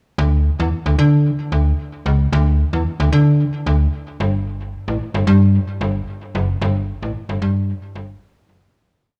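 A slap-like FM bass opens the recording at 0.2 seconds and plays entirely alone, carrying a fat, syncopated boogie line laced with chromatic approach notes. This smooth, feel-good piece of early-eighties boogie funk moves in a straight 4/4 feel, set up as a stripped-down breakdown for the bass by itself. The instrument has a snappy, metallic attack and a digital character, with each note striking fast and then decaying, and it sits up front in the mix. A moderate echo-chamber reverb gives the sound a sense of space around it. From 6.6 seconds the recording fades out, with the bass line ending at 8.7 seconds.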